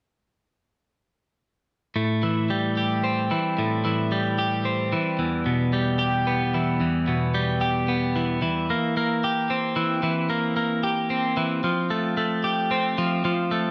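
Rock in a melancholic, brooding 3/4, cut from a longer piece, where a lone twelve-string electric guitar picks clean, bright arpeggios from 2.0 to 13.7 seconds. Compressed and up front with a slapback echo, the guitar moves through Am7, Em, C7/E and Fadd9, its chiming strings hanging in a lush hall reverb.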